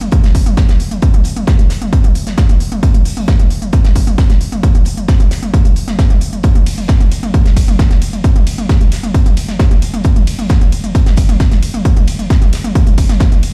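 This intense, industrial techno fragment, cut from a longer piece, opens with a layered electronic drum kit of smooth hi-hats, ride cymbal and toms, carrying a warm, tape-like tone. At 0.1 seconds a heavy electronic kick joins up front at a straight 133 BPM in 4/4, thick and produced, as if re-recorded in a small room. Also entering at 0.1 seconds, far in the background, is a loose acoustic indie kit whose hi-hat and fat snare sit in a pumping studio room. High-pass filters thin its hats, snare and room, and its top end is rolled off. The whole piece stays in one driving section, sounding fairly dry yet played through a big sound system in a bare stone room, with the kick stopping at 13.3 seconds.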